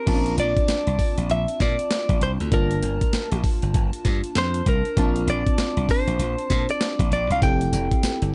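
A punchy, bright slap bass anchors this bouncy, confident new jack swing excerpt at 98 BPM with a swung sixteenth feel, riding a gritty, compressed breakbeat-style kit with thumpy kick, snare, hi-hat, tambourine and crash, while a clean, direct electric guitar carries the melody with subtle chorus over a lush, dreamy FM electric piano and soft pad moving through Bbmaj7, Gm9 and Fmaj9 in a dry, close mix.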